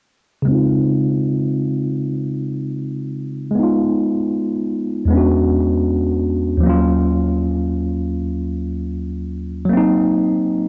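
A mellow tine electric piano sits up front, slightly out of tune and close, playing chords through a low-pass filter with a filter sweep running from 0.5 seconds to the end at 10.7 seconds. This cosy, unhurried hip hop excerpt moves at 78 BPM in Db major with a swung sixteenth feel, drifting through rich chords such as Dbmaj9, E13 and Ebm9. A moderate plate reverb and the warbling pitch drift of old cassette tape give the sound a faded, dreamy haze.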